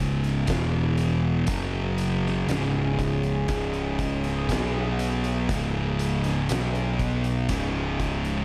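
Two thick, dark fuzz guitars and a growling overdriven bass open this sludgy stoner and doom metal excerpt together, with an eerie, metallic drone hovering faintly above them, and an oversized low-tuned drum kit joins at 0.2 seconds. The guitars grind out a picked riff in a straight four, one sitting up front and its twin tucked further back. Beneath them, the fingered bass is punchy and direct, adding an overdriven growl to the low end. The drums ring in a bright stone room, with a fat snare, a boomy kick and a hi-hat, their gritty saturation giving the kit a heavy, smoky weight. Very quiet in the background, the FM drone holds sustained chords with a slow attack, chorus and a long, mellow release, adding an inharmonic shimmer to the sludge under a light reverb.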